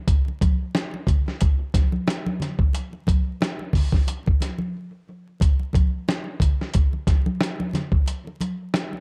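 Soulful and warm, this short R&B excerpt rides a relaxed 90 BPM groove in 4/4 with a light 16th-note swing. A dusty, sampler-style drum kit sits up front, its gritty, compressed sound carrying a thumpy kick, a medium-tuned snare and hi-hat, with a tape-warm character and the air of a large room it was re-recorded in. Congas sit lower in the mix, thick-skinned and medium-tuned, played with hard hands and miked close and dry, their hits trailed by dub echo. A brief break arrives from 4.7 to 5.4 seconds before the groove carries on to the end. The mix has little reverb but leans heavily on echo, and a layer of vinyl crackle gives it a worn, crate-dug feel.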